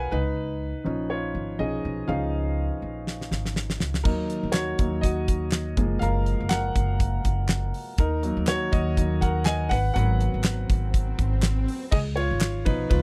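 Anthemic and hopeful, this piano-driven pop excerpt moves at 122 BPM in 4/4 with a light sixteenth-note swing, as a clear, open concert grand carries a solo over chords running from C#add9 through D#m, F#maj7 and G#m7 to C#7, joined throughout by a woody, dark pizzicato upright bass. A damped 70s drum kit enters with a fill at 3.1 seconds, bringing a fat snare, tight kick, hi-hat, ride, crash and handclaps, and an electronic swell sounds from 10.6 to 11.9 seconds. The sound is a dry, close 1970s-style studio recording with little reverb, keeping the piano and drums up front.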